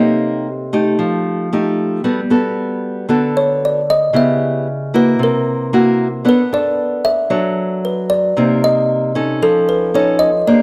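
Bossa nova at 114 BPM in a sophisticated, relaxed mood, this short cut from a longer piece features a woody, ringing kalimba taking the melody as a solo from 0.0 to 10.6 seconds, plucked close and dry with a hollow-box body, over an up-front, fingerpicked nylon-string guitar comping through jazzy chords like Cm7, Gmaj9 and C7#11, all set in a dark production with a moderate large studio reverb.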